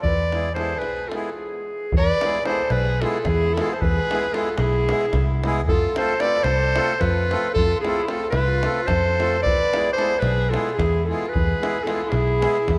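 A clear, classical-style clarinet leads as an up-front solo in this restless, virtuosic Balkan wedding-band folk piece, moving briskly at 223 BPM in a straight 7/8 in E Phrygian dominant. A dark, smooth bowed violin with vibrato carries a second line beneath it. A reedy single-reed accordion with dry tuning supplies accompaniment, while a prominent round, foam-muted vintage electric bass and a tight, compressed, saturated davul drive the rhythm, all set in a moderate concert-hall reverb. The harmony opens on E, a brief stop falls at 1.4 seconds, and the band then shifts to F at 5.7 seconds and returns to E at 9.5 seconds, in a fragment cut from a longer piece.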